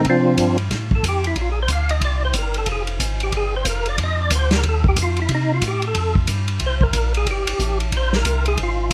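Close, detailed microphones and light reverb frame this short, greasy and bluesy soul jazz organ trio excerpt in a swung 4/4, where a fat, lightly overdriven, percussive tonewheel organ carries the melody with key click, third harmonic percussion, chorus vibrato and a slow rotary speaker; a piping, scooped tonewheel organ with a stopped rotary speaker plays the bass; and a muffled, lo-fi vintage drum kit with a punchy kick and medium-tuned snare sits up front alongside both organs.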